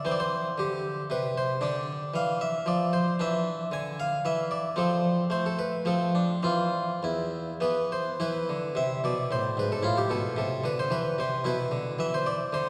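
Heard from further back in a church with a long, wet reverb tail of 2.7 seconds, this short passage cut from a longer piece is a baroque-style suite movement for solo harpsichord. The instrument is a bright, plucked French-style harpsichord on a single set of strings, its mid-forward tone sitting up front within that resonant space. In a grave yet flowing 3/4 at roughly 100 to 117 BPM, the playing moves with a free, rubato feel, tuned slightly low at A4 = 439 Hz and ranging from E2 up to G#5. The opening section travels from C through Dm, Dmadd9, F and Cadd11/E to a bare E5. At 8.2 seconds a new section turns toward E and Am, and the passage ends on E5/B at 12.7 seconds.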